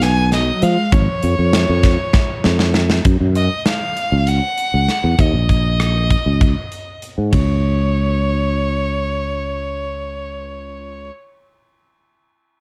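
A dark, warm production with light reverb frames this bright, intricate progressive instrumental, cut from a longer piece and moving in 7/8 at 196 BPM with a straight feel. A clear, biting violin with a smooth top and light vibrato carries the melody through slapback echo over a growly, punchy fretless bass thickened by analog chorus. A slightly broken-up electric guitar with tremolo sits in the background until 2.7 seconds, and a tight, gritty metal drum kit plays up front, adding a fill just before the harmony shifts from Db7 to Gb5 and later Eb5, then stops at 7.5 seconds to leave violin and bass to finish.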